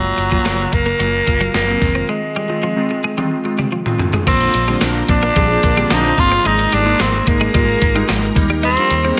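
A straight 4/4 groove at 110 BPM drives this nostalgic, glossy 1980s-style pop excerpt in Bb mixolydian, built on a gated digital drum machine with a thumpy kick and an up-front gated-reverb snare, a dark, round, foam-muted fingered bass, and glassy, detuned digital keys with chorus. A raspy, gritty tenor saxophone with vibrato and digital delay carries the melody up front, while a twangy twelve-string electric guitar plays a compressed riff in the background, and a break with a drum fill leads into a new section at 4.3 seconds. There, shimmering string-machine violins add sustained chords and mellow synth brass enters with soft-attack stabs, set in a lightly reverberant room.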